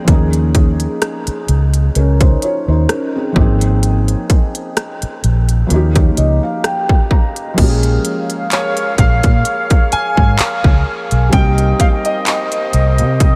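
A slow 64 BPM trap beat with lightly swung 16ths, hard-clipped kick, crisp hats, handclaps, rim clicks and crash, drives this moody, late-night contemporary R&B fragment, where a round, foam-muted electric bass sits up front beneath an intimate felt-muted upright piano with audible action noise and lush chorus, which plays a fill from 5.7 s before a mellow woodwind section enters with sustained chords at 7.6 s and a clear concert grand piano takes the melody at 8.5 s through analog chorus and delay, all over chords moving from Eb7sus4 to Cm7 in a dreamy mix soaked in huge ambient reverb.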